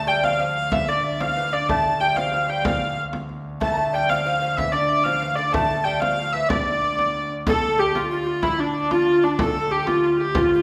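A rich, nasal hurdy-gurdy carries the melody up front in this driving, mysterious medieval dance in D minor at 124 BPM in 6/8, with a breathy tenor recorder with crisp chiff playing a second line in the background, a delicate fingerpicked gut-strung lute adding its own line until 7.3 s, a thick pipe organ drone on D2, and a deep, close frame drum, all set in a wet recital hall reverb in this excerpt cut from a longer piece.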